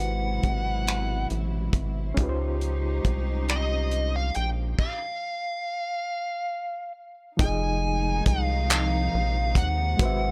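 Slow, sultry late-night R&B in F minor, this short excerpt sways in 6/8 at 46 BPM with a straight feel. A smooth, bright overdriven electric guitar carries the melody up front, its picked lines trailed by tape echo, while a reedy, barky electric piano with gritty overdrive and fast tremolo fills in the accompaniment through a combo amp. A dark studio string section holds soft-attacked, sul tasto chords with light vibrato, and a rubbery, hollow square-wave bass bounces low and up front. The cloth-damped drum kit sounds thuddy and close in a small room, with a tight kick, dark cymbals, hi-hat, crash, finger snaps and handclaps. The harmony moves from Ab7alt to Dbmaj9#11, breaks into a stop from 4.8 to 7.4 seconds, then settles on Fm7 for the closing section, all bathed in studio reverb.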